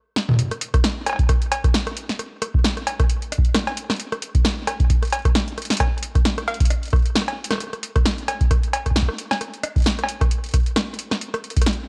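This dry, gritty hardware recording has the worn character of cassette tape, with little room sound around the parts. It is a short cut from a longer IDM piece at 133 BPM in 4/4, swung at 56% on the 16ths, and it feels playful yet wistful. An electro analog drum machine enters at 0.2 seconds, sitting up front with a punchy snare, metallic hats, cowbell, rim click and toms, its hits trailed by tape echo. A deep analog electronic kick joins at 0.7 seconds, also up front and a touch louder than the machine kit. After a brief stop and drum fill at the opening, the beat settles into a single section that runs to the close of the cut.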